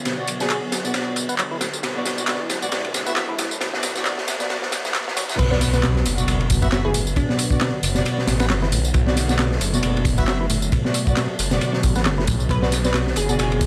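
Energetic and playful, this breakbeat cut opens with a build-up over its first 5.4 seconds, where a drum fill rolls across a crunchy, gritty acoustic break with dark cymbals, a high-tuned snare and a tight kick up front, alongside a punchy analog drum machine's claps, hi-hat and tambourine, while filter sweeps move through a lightly overdriven tonewheel organ riff with key click and a lush, airy pad carrying vintage sampler grit and sidechain pumping. A swirling, thick detuned saw bass anchors the low end as a dark string section adds expressive bowed stabs with vibrato and portamento, and a very quiet riser leads into the drop at 5.4 seconds, marked by an impact. A crystalline wavetable pluck sounds its melody in brief flashes through a small-speaker tone, all set in light reverb over a layer of vinyl crackle.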